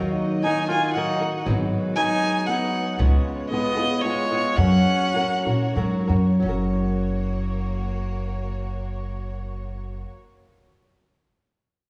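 A dark, woody solo violin carries the bowed melody with vibrato from 0.4 to 5.8 seconds alongside a mellow, classical-style trumpet second line, over boxy fingerpicked flamenco guitar with finger squeak, a thumpy pizzicato gut-string upright bass and a soft, intimate chamber violin section holding chords in the background, giving this festive, proud mariachi excerpt in 3/4 a sense of slowing down from 3.0 to 6.4 seconds within a moderate scoring-stage reverb.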